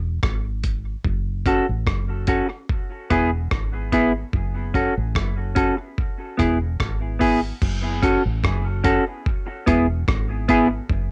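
Dub reggae at 73 BPM in F# minor, heavy and spacious, with a deep, round, punchy fingered bass, a gritty, compressed sampler-style drum kit with a thumpy kick, crash, hi-hat and rim click kept up front on cassette tape, and a clean, dark electric guitar entering at 1.5 seconds with subtle chorus and dub echo, all moving between E and F#m in a lightly reverberant home cassette recording cut from a longer piece.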